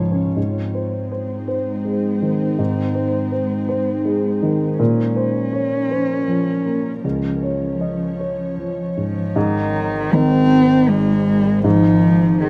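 A concert grand piano with a deep bass sits up front from the very start, alongside an ethereal, airy pad carrying ensemble chorus and built-in reverb and a rich, soft-edged bowed double bass in the background; a dark, woody solo cello with vibrato then enters at 0.4 seconds as a close second line while the bass drops out until it returns at 9.3 seconds, all in a hopeful, tender neoclassical excerpt in Ab major that moves in a rubato 3/4 at 80 BPM under light reverb.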